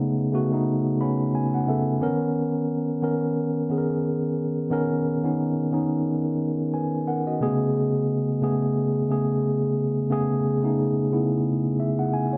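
A mellow tine electric piano plays alone, clean and up front through its built-in speakers with light reverb, carrying a soulful, relaxed R&B groove at 89 BPM in B major with a gentle sixteenth-note swing, moving from Amaj9 to Bmaj9 at 2.0 seconds and back to Amaj9 at 7.4 seconds, with fills from 0.7 seconds and again from 11.4 seconds in a dry, close 1970s-style studio sound.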